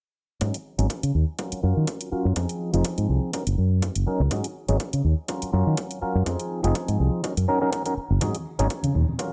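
Filtered disco house at 123 BPM in Ab mixolydian, feel-good and joyful, built on a growly, up-front fingered electric bass and a stringy, percussive clav with phaser, both pumping under sidechain and a low-pass filter across an Ab7sus4–Gbmaj7–Fm7–Ebm7/Gb progression, alongside a punchy, tape-warm electronic kick re-recorded in a small room, metallic layered electronic hi-hats swinging lightly on the 16ths, and distant congas and tambourine that arrive at 8.2 seconds, the groove framed by a filter sweep and light digital ambience.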